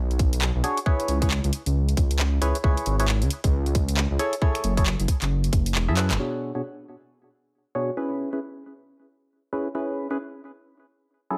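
UK garage in a skippy, bouncy two-step mould, this excerpt cut from a longer piece runs at 135 BPM in 4/4 with a 61% swing on the sixteenths. A dark, detuned saw bass sits up front, deep and rumbling with a beating unison edge and tube saturation, moving through the chords Bm69, C#m7 and F#m9. Tight, layered electronic kicks and a produced house kit of finger snaps, handclaps and bright, overdriven hi-hats drive the groove, with the kit's snare and hats softened by low-pass filtering and studio reverb. A hollow, organ-like percussive stab with a wave-folded noise layer, chorus, phaser and digital delay enters at 0.6 seconds. It carries on after the kick drops out at 5.6 seconds and the bass and kit follow at 6.2 seconds, just after a drum fill and a band accent. From there the mellow stab plays alone through a filter sweep until 11.4 seconds, returning to Bm69 and C#m7 inside a digital ambience.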